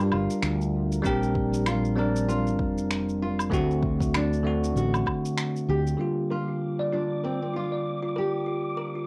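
A bright, bell-like electric piano sits up front in this relaxed sunset chillout excerpt, supporting a fingerpicked nylon-string guitar melody roughened by 12-bit sampler grit, cassette tape and analog delay, while a round, punchy fretless bass with tube saturation and an overdriven electronic kick anchor the swung groove alongside woodblock, shaker and finger snaps that drop away at 6.0 s. At that point the harmony returns from Gm7, Bb69 and D7 to Gm7, a woody, hollow kalimba takes up arpeggios through a low-pass filter and tape echo, and an airy, breathy wind-like texture drifts in at 6.7 s, all in a small room.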